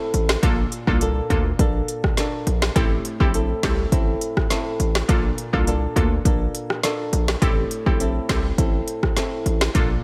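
A thumb-plucked acoustic flamenco guitar plays arpeggios from the very start, giving this sultry, hypnotic dancehall groove its character in A phrygian at 103 BPM in a straight 4/4. An afro-pop drum kit sits up front, electronic and produced yet tape-warm, with a deep kick, a woody snare, rim clicks and crisp hi-hats that sound re-recorded in a small room. Underneath, a hard-hitting 808-style bass lands punchy and heavy, its sine tone layered with noise, each note striking fast and then decaying. From 0.4 seconds a glassy wavetable pluck adds accompaniment, crystalline and detuned with a sub octave, a filter sweep and a bright chorus sheen. The harmony sways between Bbmaj7 and Am7 across this dry, close-sounding excerpt from a longer piece.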